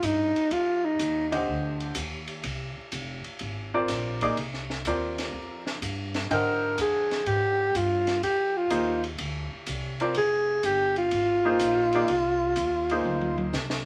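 A breathy, mellow alto saxophone sits up front and close in this searching, cool modal jazz passage in F dorian, swinging in 4/4 at 124 BPM over an Fm9 harmony. The saxophone voices a short opening phrase with a touch of vibrato, falls silent at 1.3 seconds as a bright upright piano takes up the accompaniment, then returns at 6.3 seconds to carry the solo melody through to the close. The piano is intimate and brilliant, its action noise audible, while the pizzicato upright bass gives a woody low line under everything. The open acoustic drum kit moves across hi-hat, ride and snare with dark cymbals, a high-tuned snare and a boomy kick, rolling into a fill at 13.1 seconds. A modest small-room reverb and a layer of vinyl crackle frame this fragment, cut from a longer piece.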